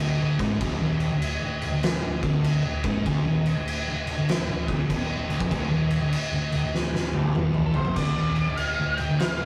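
A swung 4/4 groove, with a moderate swing on its eighth notes, drives this short, heavy and hypnotic clip of stoner and doom metal. An oversized, low-tuned acoustic drum kit sits up front, with a boomy kick, a fat snare, crash cymbal and toms, all gritty and saturated with a rolled-off top. A drum fill arrives at 6.7 seconds. Behind it, two thick fuzz guitars grind out the low riff together, and a growly, punchy picked electric bass plays an octave beneath them. At 7.7 seconds a dark octave-fuzz lead guitar joins with a high melody, just before the music moves into a new section at 8.0 seconds. The sound is a rough rehearsal-room recording with tube saturation and moderate studio reverb, and the drums carry a bright stone-room character.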